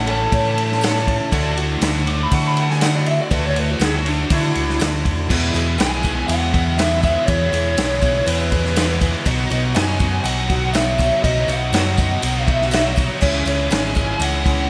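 Folk rock and heartland rock with a jangly, open-road mood, this clip from a longer piece opens with a smooth overdriven lead guitar solo carrying the melody through digital delay for the first 5.3 seconds. Beneath it sit a shimmering, octave-doubled twelve-string acoustic guitar with analog chorus and a bright, double-tracked crunchy guitar riff touched with slapback echo. A round, punchy fingered electric bass and an up-front vintage drum kit with dark cymbals and a tight kick drive the straight 4/4 feel, while a very quiet, jingly tambourine sits behind them as the harmony moves from A and Dadd9 to E, B and C#m, all wrapped in a lush hall reverb for a big arena sound.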